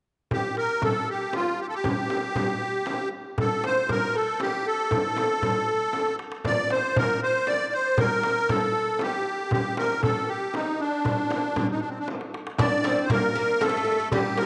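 A reedy, shimmering musette accordion carries the melody up front in this hypnotic, melancholic Arabic maqam ensemble excerpt in 3/4, over a clay-shell darbuka struck with hard hands in the background and a small, bright frame drum heard at a distance, with drum fills at 5.9 and 12.1 seconds before a woody, plectrum-plucked fretless oud with double strings enters as a deep second line at 12.6 seconds, alongside a wet plate reverb.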